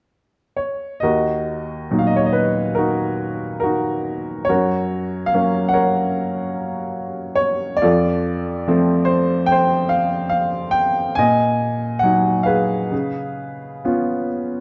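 Classical solo piano in Eb minor, wistful and melancholic, unfolding at a rubato 71 BPM as a clear, boxy, up-front baby grand enters at 0.6 seconds and sings its lyrical line from Eb2 to Ab5 over chords drifting from Ebm through Gb, F and Ebm/Bb to Db7, all set in a dark production with moderate recital-hall reverb in this short cut from a longer piece.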